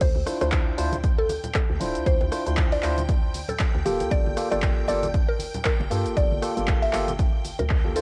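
A dry, overdriven electronic kick sits up front at 117 BPM in 4/4, with a 16th-note swing that gives this deep house drop in D minor a hypnotic, smooth sway. A punchy analog drum machine adds hi-hat, shaker, rim click, handclaps and crash cymbal, also overdriven and treated with studio reverb and cassette tape, while low-tuned acoustic congas with a thin skin tap along in the background. Underneath, a hollow, bouncy FM bass knocks with sidechain pumping, and a string machine of violins holds a shimmering, slow-attack sustained note far behind the mix. A woody, round mallet-like synth pluck carries the melody through chorus, phaser and tape echo, and a bright, clean tine electric piano joins with stabs at 0.3 seconds. The harmony moves from Dm9 to Gm9 at 4.1 seconds, and the whole excerpt, cut from a longer piece, has the light reverb and digital ambience of a home recording on cassette.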